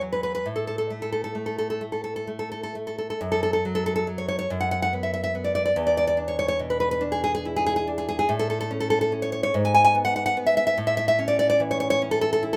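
A solo nylon-string guitar opens the recording, fingerpicked and placed up front in a classical, acoustic voice that is tender and warm. It is a romantic piece in A major and 6/8, moving slowly at about 43-49 BPM counted in dotted quarters, with a rubato feel that lets the phrases breathe. The guitar spans a broad range, from the low E2 up to G#5, and light reverb adds a soft halo around each note. A brief opening passage gives way at 3.2 seconds to a longer second section, where the harmony passes through B5 over F#, E5, A and G#m7 before settling back on A at 10.8 seconds. The whole fragment lasts 12.6 seconds, a short, tender glimpse cut from a longer piece.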